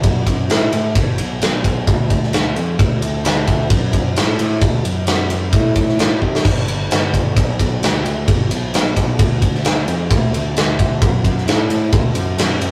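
A fuzzed, overdriven picked electric bass and a huge arena drum kit open this gritty, raunchy blues rock and southern rock power-trio passage together, driving a straight 4/4 at 131 BPM in D mixolydian, tuned slightly flat at A4 = 436 Hz. The acoustic drums sound big-roomed and mid-forward, with a punchy kick, a medium-tuned snare, crash and ride cymbals and a rolled-off top, sitting up front and breaking into a fill at 6.2 seconds. Cut from a longer piece, it has the rough feel of a rehearsal-room take with a moderate booth ambience.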